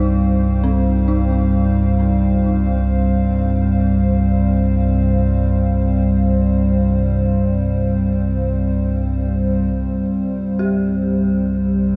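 Dark ambient drone in C minor, unfolding in free time with a brooding, cavernous mood across this 12-second cut from a longer piece. Up front, a deep rumbling drone holds the low register from C2 to G2, its detuned, wave-folded sawtooth and triangle tones rising slowly and sustaining with a long release in its own built-in reverb. Sharing that forward position, a dark analog pad sustains chords from G3 to F5, blending square, sawtooth and triangle waves with a sub octave and a chorus-thickened, moody sheen over a C5 chord. Further back, a dark detuned FM synth bell plays eerie, inharmonic arpeggios between C4 and G4, its fast-attack, decaying notes mellow yet full-bodied and trailing into a diffuse ambient delay. A vast cathedral reverb with a 6.7-second tail bathes the mix, and the music shifts into a new section at 9.7 s while all three parts continue to the end.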